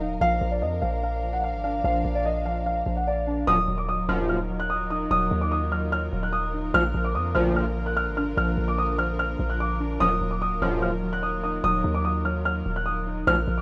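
A rough home-demo mix with light reverb and small-room ambience frames this dark, eerie hip hop excerpt in Eb harmonic minor, moving at 147 BPM with a half-time feel and tuned to A4 = 435 Hz. A shadowy, mellow concert grand carries the melody up front, over warbling, detuned lo-fi synth keys with chorus, hushed sul tasto strings holding intimate sustained chords, and a deep, boomy 808-style bass, all cycling between Bb and Ebmadd9. At 3.5 seconds an edgy sync-sweep polysynth enters with bright, nasal, chorused stabs that sit prominently in the mix until 13.4 seconds.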